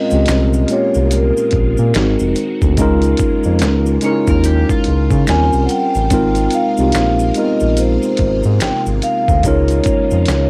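Late-night and introspective, this neo-soul R&B excerpt settles into 72 BPM with a swung sixteenth feel: a soft-mallet vibraphone carries the melody with slow motor vibrato and a cassette-tape tint over mellow, clean tine electric piano chords in plate reverb, while a swirling, bright phased string machine sustains chords low in the mix, an up-front smooth sawtooth synth bass adds ring modulation and vibrato, faint maracas and finger snaps sit beside a gritty, compressed sampler-style drum kit with a thumpy kick, and a twangy, slightly broken-up electric guitar with lush chorus appears briefly from 4.0 to 5.3 seconds, the whole excerpt carrying the light reverb of a home cassette recording.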